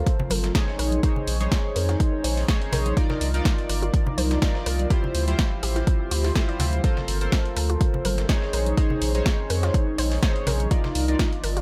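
Deep house with a late-night mood, this brief cut from a longer piece moves with a gentle swing at 124 BPM in 4/4. Up front, a round sine sub bass and a glossy, retro chorused polysynth playing sustained stabs both pump against the sidechain, the synth trailing dub echo as the chords drift through minor eleventh shapes. An overdriven, layered electronic kick sits forward in the mix, joined by a punchy analog drum machine with a tape-softened snare and hi-hat. Further back, a gritty sampler-style soul kit adds filtered hats and snare, while close, dry congas bring a bright acoustic touch from 0.2 seconds. A detuned analog pluck enters at 0.3 seconds with short, chorused arpeggios, colored by cassette tape character and tape echo, sitting in the background of a dry, intimate room.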